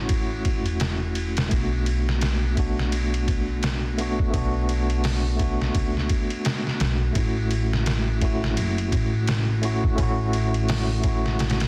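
Cinematic and smoky, this trip hop fragment, cut from a longer piece, moves with a swung sixteenth-note feel as a clean tine electric piano, up front and played through its built-in speakers, carries the accompaniment with tremolo and tape echo over chords that shift from A6 to Bm7 at 1.5 seconds and back to A6 at 7.2 seconds. Beneath it, a woody pizzicato upright bass with steel strings holds the low end, while a pitched-down, sampler-style drum kit, re-recorded in a small room and placed up front, pairs a muffled, thumpy kick and medium-tuned snare with hi-hat and ride cymbal from 0.1 seconds. Light reverb and vinyl crackle sit within a dense, heavily limited modern master.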